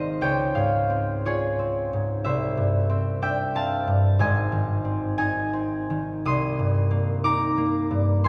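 A solo concert harp, fingerpicked and ringing up front across a span from Ab1 to Eb6, opens this wistful, mysterious classical excerpt in Ab major, drifting at 60 BPM in a rubato 6/8 through Dbmaj7, Cadd9, Ab and Cm7 chords while its warm, acoustic tone blooms into a wet church reverb.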